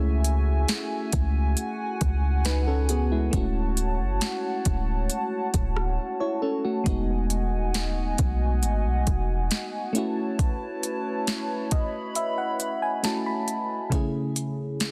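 A dense, heavily limited modern mix with light reverb frames this smooth, tender contemporary R&B excerpt, moving at a slow 68 BPM in 4/4 with a straight feel in E major. Up front, a warbling, vintage FM electric piano with a dark, fast-decaying tone carries the accompaniment, while a hollow, flute-like pad with a nasal, detuned edge holds mellow sustained chords under chorus. A deep, boomy 808-style bass sits prominently beneath them and drops out at 9.5 seconds. The electronic drum kit pairs a soft kick with a sharp snare, rim clicks and crisp hi-hats, all given a gritty overdrive. The harmony drifts from F#m9/C# through Dmaj7 and Emaj9 to B9sus4 before landing on Amaj7/C#, with a brief silent gap at 6.0 seconds and an electric piano fill starting at 11.3 seconds.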